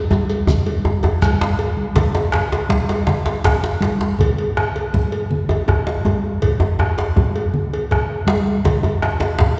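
Heard from further back in a wet concert hall with a long reverb tail, this powerful, earthy West African traditional drum ensemble moves at 108 BPM in a straight 12/8. A drum fill opens the first 2.0 seconds. Inside it a grainy, compressed shekere sits in the background until 1.4 s. An up-front, cracking djembe played with hard hands sounds alongside a second, very quiet, band-limited djembe with soft hands, thick-skinned congas, a metallic cowbell and a deep, dark bombo that enters at 0.5 s.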